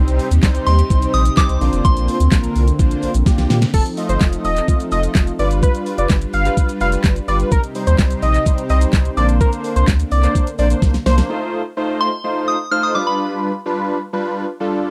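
The excerpt opens with a big, bright polysynth and a soft supersaw pumping against the kick, over a saturated sub bass that feels deep and thick, all set in an energetic, confident dance-pop groove at 127 BPM in a straight 4/4. The smooth R&B drum kit comes in at 0.1 seconds with a knocking kick, fat snare, handclaps, shaker, hi-hat and crash, sitting up front with the roomy punch of a small space, and short fills mark the turns at 3.3 and 10.8 seconds. A gentle, warbling FM bell with a vintage chorus and slapback echo carries the first high melody, before an octave-doubled lead with a bold, retro edge and vibrato takes over at 3.7 seconds as the harmony moves from Cm and Bbadd9 to F7 and G7. The detuned polysynth has a nasal, moving-notch bite and a lush chorus, while the supersaw stays smooth and mellow underneath. The bass, drums, supersaw and lead drop out around 11.3 seconds, leaving the polysynth to carry on as the bell makes a brief return, all in a dry, close 1970s-style studio sound.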